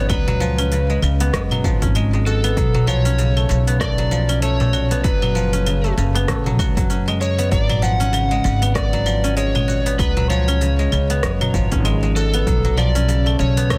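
Mystical and meditative, this organic downtempo passage moves at 97 BPM in 4/4 with a swung 16th-note feel. It is built on C#7sus4, Bm9 and F#m chords, where silvery, ringing fingerpicked guzheng arpeggios and an overdriven slide guitar melody both trail digital delay. A woody pizzicato upright bass sits up front with sidechain pumping, beneath a punchy, layered electronic kick with overdrive. An electronic kit adds crisp hi-hats, claves, rim clicks, shaker and a soft-clipped snare, while a very quiet clay darbuka played with soft hands joins at 0.3 s, all within a small room ambience and a dense, heavily limited modern master, cut from a longer piece.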